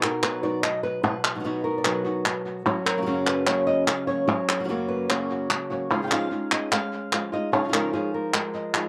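Flamenco in a fiery, dramatic mood, this short excerpt cut from a longer piece features an up-front fingerpicked flamenco guitar with fresh strings playing the melody over a second fingerpicked guitar's stabs, both carrying slapback echo, while crisp, vintage, band-limited palmas hand claps sit close in the mix, all under light reverb in an outdoor recording as the chords move from B to Gb to Dbadd9.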